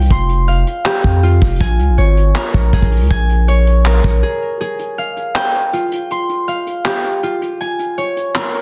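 A ringing, fingerpicked concert harp leads this menacing, hard-hitting trap excerpt in F minor, its arpeggios sent through a digital delay over a deep, sine-like 808-style bass and a dark, brushed vintage kit with a punchy kick, handclaps and hi-hat, at 160 BPM in a half-time feel. The bass drops out at 4.2 seconds for a brief break, leaving harp and drums to carry the second section on Fmadd9 and Bbm7 chords. The sound is dense and heavily limited, with a small room around the up-front harp and rolled-off drums.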